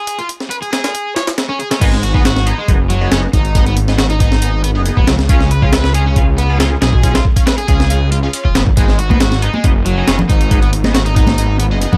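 A dry, vinyl-crackled breakbeat excerpt at 138 BPM in G# dorian, raw and energetic, opens on a crunchy, double-tracked overdriven guitar riff with 12-bit grit and dub echo over a gritty, compressed sampler-style kit with a thumpy kick and high-tuned snare, then drops at 1.8 seconds into a menacing, thick detuned saw bass up front and nasal, band-passed chord stabs with phaser, chorus and dub echo moving through G#m and C#, while small-room congas join in the background at 9.1 seconds.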